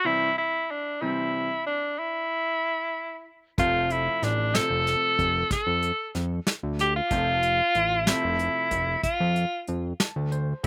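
Dry, close and up front, this short cut from a longer progressive instrumental piece sounds as if played outdoors, with little reverb around it. Set in an uneven 11/8 with a straight feel, the music is intricate and bright. A forceful, vintage-toned tenor saxophone carries the melody with vibrato and a jazz-soloist punch, while a brilliant, polished baby grand piano accompanies from the start, touched by a slapback echo. At 3.6 s a fat, saturated analog bass with a plucked, detuned sawtooth edge joins alongside a brushed drum kit with a punchy kick and medium-tuned snare, as the harmony moves from C to F. Near the close, at 9.7 s, the piano adds a short fill.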